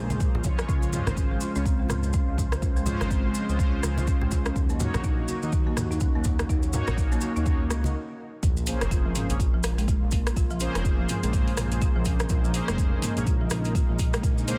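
A detuned sawtooth pad, mellow synth brass stabs and a smooth, saturated synth bass open this excerpt of spiritual, driving afro house in a swung four-four groove, all three pumping against the kick. The pad sits in the background with a soft attack, chorus and a moving notch, while the round, brassy stabs carry chorus, tape echo and a filter sweep over chords that move from Bbm9 through Dbmaj7 to Ebm7. A woody, airy marimba played with soft mallets spins arpeggios through tape echo, and grainy maracas and very quiet, close and dry congas add hand percussion. An up-front, tape-toned electronic kick anchors the beat beneath an overdriven deep house kit of hi-hat, rim click and toms that sounds re-recorded in a small room. The congas drop out at 7.9 seconds for a brief stop, and at 8.4 seconds the groove returns to Bbm9 for the drop, marked by a very quiet electronic sub drop. The mix has light reverb and a dense, heavily limited modern master.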